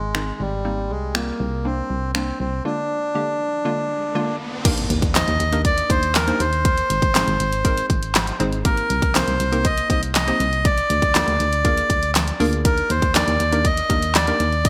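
Bittersweet and driving, this dance-pop excerpt at 120 BPM sets a reedy, up-front accordion melody with delay over a hollow, detuned square-wave pluck with chorus, a round, dark FM bass, both pumping with sidechain, and a pop drum kit with gated reverb, crash, snaps, handclaps, hi-hat, a punchy kick and a fat snare, while a background riser at 3.8 seconds leads into an impact at 4.7 seconds, all in a bright 1980s-style digital production that moves through Ab, Cm7, Bb7 and Ebmaj7.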